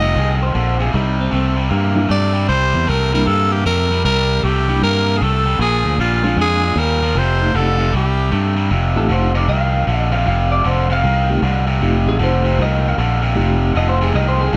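A lightly reverberant room holds this laid-back, soulful electric blues shuffle, a swung 154 BPM groove in F mixolydian cut from a longer piece. A raspy, growling tenor saxophone with vibrato and plate reverb leads up front until 8.5 s, over a punchy fingered bass, a biting overdriven guitar riff and a worn, reedy electric piano with fast tremolo that sounds slightly out of tune. A slightly broken-up, compressed guitar through a small old amp adds a second line with warbly pitch drift, and from 8.7 s a clean electric guitar solo takes the spotlight.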